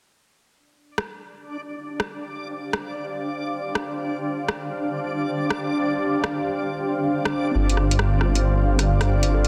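This wistful, ghostly future garage excerpt at 137 BPM opens at 1.0 seconds with an up-front, overdriven deep house kit of metallic hats and rim clicks over a swung 16th-note feel, then a reversed, dreamy texture rises from 1.5 seconds and a cloudy, granular pad with 12-bit grit and a filter sweep joins at 2.0 seconds, both hovering over G7sus4, before muted, chorused felt-like keys and a menacing, detuned saw bass enter at 7.5 seconds as the harmony shifts to Dm7/G, all within a dense, heavily limited master with cassette-tape colour.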